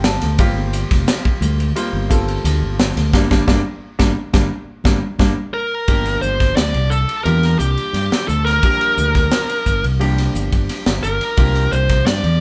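Nocturnal and driving, this electric jazz fusion excerpt moves at 87 BPM in a straight 4/4, centered on G minor with light reverb and the feel of a band playing live in one room. A clear, intimate grand piano opens with a short fill and carries the accompaniment throughout, its action noise audible beneath polished chords that move from Gm11 to Gm7 and finally to C9sus4 at 11.4 seconds. Up front, a fingered electric bass holds the low end with a direct, amped tone, while a crisp drum kit with a high-tuned snare, punchy kick, hi-hat and ride cymbal sounds airy and polished. Bright, thin-skinned congas sit in the background, compressed and saturated, until about 5.4 seconds, and the band hits an accent together in the opening stretch before a drum fill leads into the second section. At 5.5 seconds a bluesy overdriven lead guitar takes the melody, its picked, distorted voice staying between G4 and D5 and riding up front to the end.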